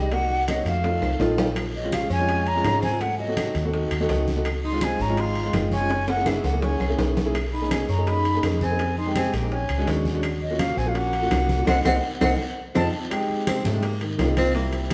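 A pure, vibrato-rich concert flute opens the melody over a breathy growling tenor saxophone second line and a dark, up-front woody fretless electric bass, joined at once by a smooth, long-sustaining baby grand piano, soft round bongos, thick-skinned congas, ringing metal-shell timbales and a raspy vintage guiro, with background claves following at 0.5 s, in this sultry, sophisticated Afro-Cuban jazz excerpt in Bb minor at 166 BPM, played live in a stone room with wet reverb, where drum fills and a band accent lead to the flute dropping out at 12.9 s and the tenor saxophone taking a gritty solo from 13.1 s.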